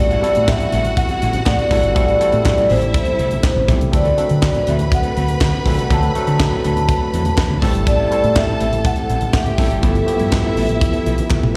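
A ringing vibraphone played with soft mallets carries the melody over this driving, danceable disco cut, its slow motor vibrato and slapback echo sitting close and full. Lush, distant bowed strings add a second line, while a barky, lightly overdriven tine electric piano and a dark, clean electric guitar in the background supply accompaniment over sustained chords from a very quiet tonewheel organ with fast rotary swirl and key click. A round, punchy fingered bass and a tight funk kit with a high-tuned snare drive the groove alongside soft-handed congas and hollow group handclaps, all heard as a live gig through the venue's PA in recital-hall reverb, with a drum fill at 11.3 seconds closing the excerpt.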